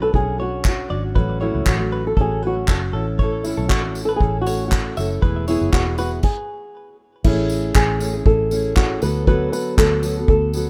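A rough home-demo mix in a small room gives this carefree, easy-going acoustic pop excerpt at 118 BPM in A major a close, unvarnished feel. A dark, boxy flamenco guitar carries the thumb-plucked melody with audible finger squeak over a full-bodied, fingerpicked dreadnought steel-string, a round, foam-muted vintage electric bass, and an up-front unplugged kit of punchy kick, bundle sticks, crash cymbal, tambourine and handclaps. A clean, compressed electric guitar recorded direct adds arpeggios through digital delay until 6.1 s, and after a brief stop the music moves into a new section at 7.2 s.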